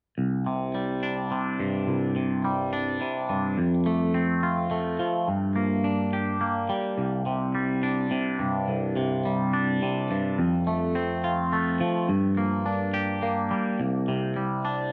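In a straight 3/4 at 106 BPM, a brooding, cinematic rock fragment unfolds as a lone, fingered electric guitar plays clean, twangy arpeggios from 0.2 to 14.9 seconds, tuned to A4 = 438 Hz and placed up front. The guitar's phaser and analog delay sit inside a wet studio reverb while the harmony cycles through Csus2, F and Gm, returning to Csus2 at 13.8 seconds.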